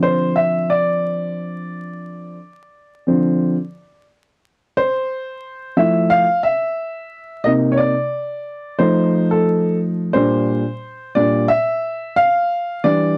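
Cool and nocturnal, this hip hop fragment at 89 BPM in 4/4 with a swung 16th feel sets a lone upright piano, dark, woody and mellow, up front in a dry, close 1970s-style studio sound with vinyl crackle, moving from Dm7 to Fmaj7 at 4.8 seconds and on through Cm7, F7 and Bb6 before the 13.2-second mark.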